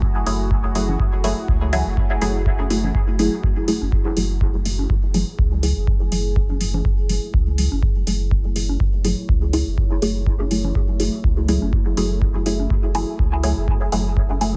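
Nocturnal and meditative, this dub techno excerpt at 123 BPM in F# minor rests on a single F#m9 chord, with a deep analog kick and a round sine sub bass that pumps beneath a dark, detuned ambient pad with chorus, while muted, up-front sawtooth chord stabs run through phaser and dub echo, metallic hi-hats enter at 0.3 seconds, and overdriven bongos and congas sit in the background from 0.9 seconds, all in a dry mix.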